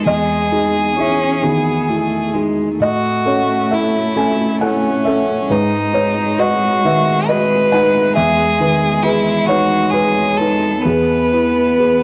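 Neoclassical piano and strings in E major, this short cut from a longer piece moves at a hopeful, intimate 67 BPM in 3/4, with a rubato feel that lets the phrasing breathe. A felt-muted upright piano sits up front with the accompaniment, its soft, mellow, boxy tone spanning a broad register from E2 to G#5. Over it, a single bowed violin carries the melody with a rich, smooth sound and light vibrato, touched by an analog delay. Beneath the violin, a lone cello plays a close second line, expressive and warm with soft attacks, vibrato and portamento. The harmony drifts from Emaj7 through A and G#m7 before settling back on Emaj7 and resolving to E around 10.8 seconds. Cassette tape colours each part, and a moderate spring reverb with a hint of studio ambience gives the home recording its cosy, lived-in air.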